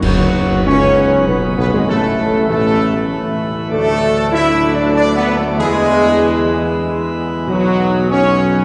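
A bright clash of cymbals and concert bass drum opens this triumphant, regal classical fanfare in three, as a close, mellow trumpet section carries the melody with light vibrato over sustained chords from the French horn section, a full pipe organ principal chorus and warm background trombones, while a dark, punchy tuba sits up front on the bass and very quiet timpani enter at 7.5 seconds, all heard from deep within a long, wet cathedral reverb in this fragment of a longer piece.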